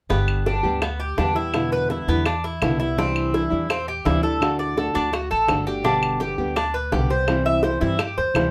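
A straight 4/4 groove of tight, high-tuned bongos starts at 0.1 s alongside the guitar, tres and bass, with small-room claves joining at 0.3 s, setting up a relaxed, warm Cuban son and guajira passage cut from a longer piece. Up front, a bright, fingerpicked nylon-string guitar plays accompaniment beside a picked Cuban tres whose metallic double strings, some doubled at the octave, spin arpeggios. Underneath, a dark, growly pizzicato upright bass with steel strings and a woody tone anchors a G, Em7, Cadd9, D progression in a moderate studio ambience.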